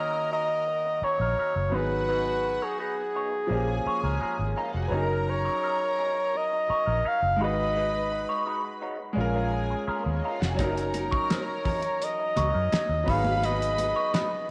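This lush, 1970s-style soul fragment opens with a close-miked flugelhorn singing the melody with light vibrato. Beneath it sits a dark, sul tasto string section floating a soft second line, while a brilliant baby grand piano rings with long sustain. An electric guitar played through a small old amp adds a compressed, slightly broken-up wah riff. A round, foam-muted fingered bass arrives at 1.0 s, punchy and up front, as the harmony cycles gently through F#6, G#m7 and A#m7 at a relaxed 85 BPM in a straight 4/4. The bittersweet, cinematic mood deepens when a cloth-damped, thuddy drum kit with a fat snare and tight kick enters at 10.4 s, joined by high-tuned, ringing congas in the background, all bathed in a moderate echo-chamber reverb.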